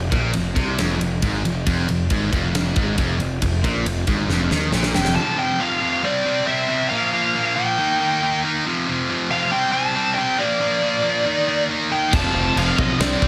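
This swaggering, anthemic hard rock clip sits in a moderate, large studio reverb, with a fat-snared, tight-kicked drum kit and a punchy, fuzzed bass up front beside a bright high-gain distorted guitar riff that runs throughout, at 138 BPM in straight 4/4. A cranked stack guitar with overdrive and phaser sits in the background, and after a drum fill at 4.3 seconds the drums, bass and stack guitar stop, leaving the riff under a dark, bluesy lead guitar with slapback echo that enters at 5.0 seconds over chords moving among F, C, Bb and Eb. At 12.1 seconds the full band returns, joined by a scooped, double-tracked high-gain guitar in the background.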